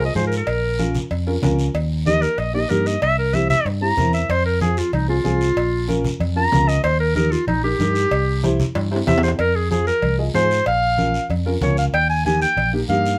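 Fiery and danceable, this cumbia excerpt features a clear, smooth-topped clarinet soloing up front in classical style over a dark, woody upright piano, a round, amped fingered electric bass, thick-skinned congas struck with hard hands in the background, a raspy guiro, and ringing, close and dry cowbell and timbales, with a drum fill at 8.8 seconds leading into a new section at 9.4 seconds, all set in a moderate studio ambience.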